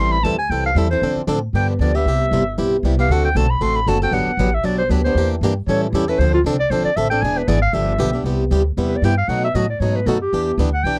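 Charming and swinging, this brisk 232 BPM jazz manouche passage in A minor, cut from a longer piece, features a breathy, subtoned clarinet soloing with vibrato and scooped notes over a boxy, freshly strung picked acoustic guitar and a woody, thumpy pizzicato upright bass on gut strings, all captured up front in a dry, close 1970s-style studio sound as the chords move from Am7 through Cmaj7 and Gmaj9 to land on Em7 at 10.3 seconds.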